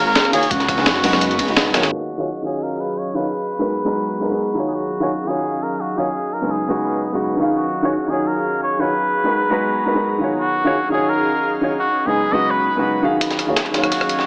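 A cup-muted trumpet with a veiled tone and light vibrato carries a melancholic melody through dub echo in this lush liquid drum and bass excerpt, over a dark, mellow baby grand piano under a low-pass filter and a breathy, chorused pad, while a rumbling detuned saw bass plays only until 1.9 seconds and gritty, pitched-up breakbeats with a thumpy background kick drop out from 1.9 to 13.2 seconds before returning for a build-up, all colored by hall reverb and an AM-radio filter.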